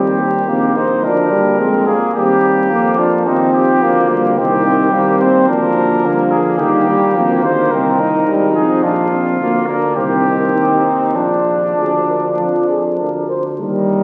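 Heard through the crackle of a very old 78 rpm record and a wet church reverb, this classical brass quintet moves at 96-110 BPM in 4/4 with a rubato feel, stately and triumphant over chords built around Eb, Bb, Cm and Ab. Up front, a mellow trumpet with light vibrato carries the melody while a warm flugelhorn takes the second line, and a soft-attacked French horn and a trombone set in the background supply the accompaniment above a bass trombone with gentle vibrato. The horn drops out at 13.3 s, just before this fragment of a longer piece ends at 14.0 s.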